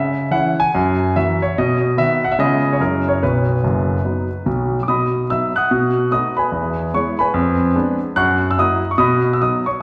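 A concert grand rings through a reverberant recital hall, yet the piano sits up front and present, with a deep bass, long sustain and the clatter of its action clearly audible. This is playful, exuberant stride piano in 4/4 with swung eighths, a short passage cut from a longer piece. The solo piano spans from F#1 up to F#6, its tone polished and intimate against the hall's 1.5-second decay. The phrase runs twice, once from 0.0 s and again from 4.9 s, and the harmony moves through C#m, F#9, B, B7, E and a diminished chord before settling back on B at the close near 9.8 s.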